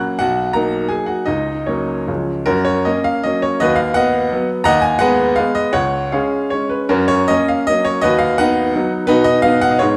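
Dotted rhythms lift this rustic, graceful romantic triple-time dance, an extract from a longer classical piece, where a solo baby grand piano, intimate and up front with audible action noise and long sustain, sways with free rubato through a recital-hall reverb, moving from its opening phrase into a new passage at 2.5 seconds.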